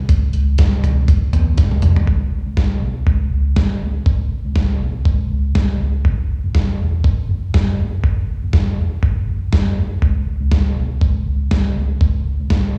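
Driving and bittersweet, this excerpt from a longer piano-driven pop piece in C# minor moves at 121 BPM in 4/4 with a light swing on the sixteenths. A gritty, compressed sampler-style soul drum kit, with a thumpy kick, medium-tuned snare, hi-hat and toms, sits up front with the character of a large room, and throws in a fill from 1.6 to 2.1 seconds before the next section begins. A dark, round, foam-muted fingered electric bass runs low underneath the whole way, while the overall sound has the feel of a live gig heard through the venue's PA.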